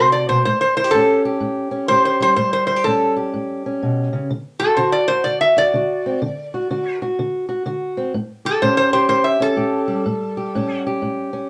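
A metal-body resonator slide guitar, played with a steel bar and fingerpicks, carries a bright, nasal melody over a fingerpicked old ladder-braced acoustic guitar whose dark, boxy tone and old strings give a woody bed underneath, both up front from the first second. This laid-back, rollicking acoustic country blues excerpt in A mixolydian swings along at 125 BPM in 4/4, moving from A7 to D and back to A7. The resonator stops at 10.8 seconds while the acoustic guitar rings on to 11.5 seconds, the pair sounding as if played live together in one room with a short, wet studio ambience.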